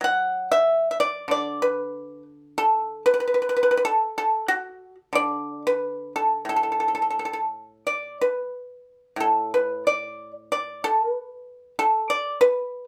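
Pastoral and flowing, this short passage from a longer piece of Chinese traditional music features a solo pipa carrying the entire performance from 0.0 to 12.8 seconds. The tempo sits around 92 BPM in 4/4, but the beats are uneven and the phrasing moves in a loose rubato, giving the line a free, breathing quality. Played with fingerpicks in the D gong mode, the pipa spans from A2 up to F#5, and its plucked attack sounds percussive and dry, with an acoustic, warm tone. Close, detailed microphones place the instrument up front, while a light reverb adds a faint sense of space around it.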